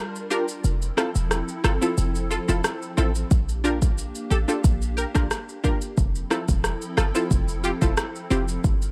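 Sunny and summery, this short dancehall excerpt at 90 BPM in F major opens on a hollow, flute-like pad with ensemble chorus and sidechain pumping, joined at 0.2 seconds by an up-front, tape-warm deep house kit of deep kick, rim click and shaker whose kick drops out from 2.0 to 3.3 seconds during the opening break, while a punchy, full-bodied sawtooth chord stab with chorus and a tight, sine-based 808-style bass with a noise layer move through Gm7, Fmaj7 and Bb6 in a dry mix.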